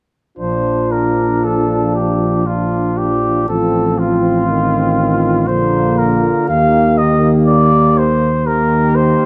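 Tender and lyrical, this brief hymn-like passage for brass band moves at a slow 60 BPM in 3/4 with a rubato feel, centred in Bb major and tuned slightly low at A4 = 437 Hz. A warm cornet carries the melody up front, its light vibrato and soft attack giving the line a gentle, roomy quality despite a somewhat distant placement. Beneath it, a dark French horn section plays a second line with the same soft attack, while a bright trombone section and a mellow euphonium, its vibrato and smooth top sitting in the background, fill in the accompaniment. A close-miked tuba anchors the bass up front, stopping just before the others at 9.1 seconds as the ensemble closes at 9.3 seconds. The harmony moves from Bb through F/A, back to Bb and on to Eb, captured with close, detailed microphones and light reverb in what sounds like a fragment of a longer piece.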